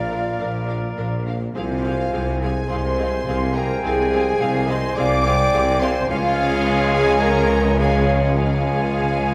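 Adventurous and soaring, this cinematic orchestral excerpt moves at 105 BPM in a straight 4/4, with a very quiet, lush violin section holding the melody on F5 over chords moving from Bb to Fm/C and then Db at 6.1 seconds. Distant, roomy French horns carry sustained chords, joined by a tight trombone section from 0.4 seconds, while a focused studio violin section, hollow flute, clarinet and cor anglais play second lines and an intense viola section accompanies in the background. Double basses, a smooth cello section and a tuba anchor the bass, all bathed in a wet concert hall reverb.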